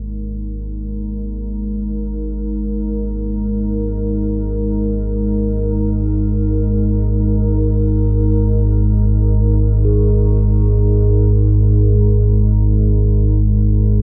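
A dark ambient drone in free time, unsettling and desolate, built on a deep, rumbling drone up front with built-in reverb and lush chorus beneath a moody, detuned analog pad holding sustained G#sus2 chords that fade out, joined by a metallic bronze singing bowl that rings softly with slow beating at 9.8 seconds, all set in light reverb with a dark production and faint mains hum.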